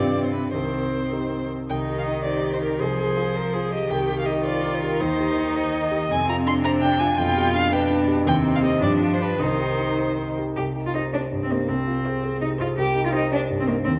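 A clear, close violin carries the melody up front, its bowed line smooth and even with vibrato, rising as high as C6 in this quick, urgent and stormy classical-period movement for piano quartet. The music moves at 109 beats per minute in dotted quarters in 6/8, with a rubato feel, in C minor and tuned to A4 = 442 Hz. Beneath it, a distant, rich-toned cello sings a smooth, even second line with vibrato, while a soft-attacked viola fills in the accompaniment with expressive portamento. The concert grand piano sits up front with a natural sound and deep bass, anchoring the texture from as low as C2. The harmony circles C minor, F minor and G7, and the whole group is bathed in the wet reverb of a recital hall with a 1.7-second decay. The passage is cut from a longer piece, with all four players sounding from the start to about 14.0 seconds.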